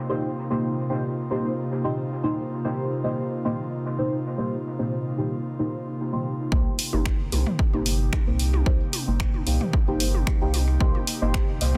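Dub techno with a meditative, nocturnal mood, cut from a longer piece, opens on an airy, breathy pad holding a Cm7 chord beneath deep, mellow chord stabs dressed in chorus, phaser and dub echo, both pumping against the beat, until at 6.5 seconds a clean sine sub bass with tube saturation, an up-front punchy kick and overdriven electronic toms in the background arrive, joined at 6.8 seconds by an analog drum machine's finger snaps and hi-hat, all within light digital ambience and a dense, heavily limited master.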